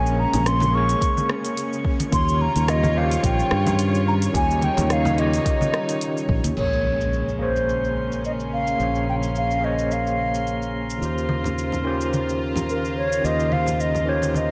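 A lightly reverberant, softly ambient mix carries this relaxed, smooth sunset chillout excerpt in Bb dorian at 108 BPM with a gently swung 4/4 feel, where a pure, woody baroque flute with vibrato and delay sings the melody over a barky, gritty tine electric piano with medium tremolo, sul tasto studio strings holding soft-attack chords, an up-front fretless electric bass, a faint glassy texture of drifting overtones, a muffled, overdriven R&B drum kit with hi-hat, rim click, shaker and crash, bright vintage congas in the background, and a soft overdriven electronic kick that plays from 1.0 to 6.4 seconds before a background impact lands at 6.6 seconds and the congas return at 11.3 seconds, all over chords moving between Bbm9 and Eb13.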